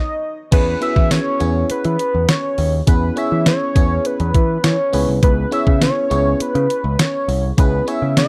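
A thick, detuned unison lead opens alone, sounding its sawtooth-and-triangle tone with a sub octave beneath and vibrato over the first 0.5 seconds before the band arrives. This is nostalgic, romantic 1980s-style pop in E major at 102 BPM in a straight 4/4, cut from a longer piece. At 0.5 seconds a clean 12-bit drum machine drops in with a thumpy kick, fat snare, hi-hat, tambourine and crash cymbal, sitting up front beside a direct, up-front picked electric bass. A glassy FM electric piano with a bell-like attack, a noise layer and a warbling chorus fills the middle register as accompaniment. The harmony rests on E6 before shifting to C#m7 at 4.9 seconds, while the dark, bold lead holds its sustained melody above. The sound is dry and close, like a 1970s-style studio recording with little reverb.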